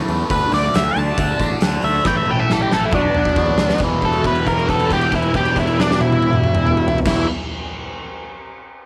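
A gritty, brooding slice of blues rock and southern rock in the manner of a power trio, cut from a longer piece, with light studio reverb around a saturated, up-front, oversized low-tuned drum kit whose boomy kick and pumping big-room sound drive a straight 137 BPM in E dorian. A bright, double-tracked overdriven guitar plays the riff through a phaser, while a growly, fuzzed fingered bass holds the low end and a warm tonewheel organ with slow rotary sits barely audible beneath, moving through D, A and Bm before landing on Em. An up-front, dark octave-fuzz lead guitar carries the melody from 0.3 seconds, and after a drum fill from 2.1 seconds a held note sustains from 3.8 to 7.1 seconds.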